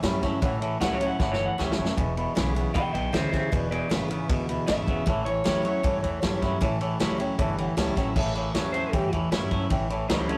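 Retro and rollicking, this rockabilly excerpt drives along at 155 BPM in a straight 4/4, centred on A mixolydian and moving between A7 and E7. A vintage drum kit sits up front with a punchy kick, a medium-tuned snare and a rolled-off top, playing crash, ride, snare and kick, and it drops a fill between 1.2 and 2.0 seconds. Underneath, a pizzicato upright bass gives a woody, thumpy low end from gut strings, while a fingered, scooped electric guitar riffs low and clean. The melody arrives at 0.8 seconds on an electric guitar through a small old amp, bright and slightly broken-up with a lo-fi twang, as a clean electric guitar solo runs through the opening 8.2 seconds. A full-bodied dreadnought acoustic guitar is picked in the background alongside a mellow, boxy upright piano, which steps forward with a fill from 7.0 to 8.2 seconds before the music shifts into a new section. The whole has the rough feel of a rehearsal-room take, with a touch of saturation and moderate studio reverb.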